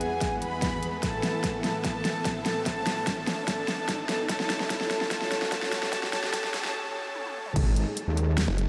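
A bowed chamber violin section opens this menacing, chaotic heavy wobble dubstep excerpt, its intimate, vibrato-rich melody played sul tasto with a soft attack and trailed by a diffuse ambient delay, over huge, lush supersaw chords that pump with sidechain and sit under a low-pass filter. In half-time at 147 BPM, an overdriven dubstep kit with a huge snare, crash, hi-hat and toms drives a build-up full of drum fills and a filter sweep, joined by a punchy, layered electronic kick and a riser in the background. The chords move from E through Asus2 to F#m/A as the tension mounts, and the violins and riser fall away at 6.7 seconds for a brief break. The drop lands at 7.6 seconds on G#5 with a heavy, detuned wobble bass, saturated and chorused up front, before a growling, aggressive distorted saw bass snarls in on F#1 for the final moments. The whole mix is dreamy and soaked in a vast reverb, thinned at the bottom by a high-pass filter.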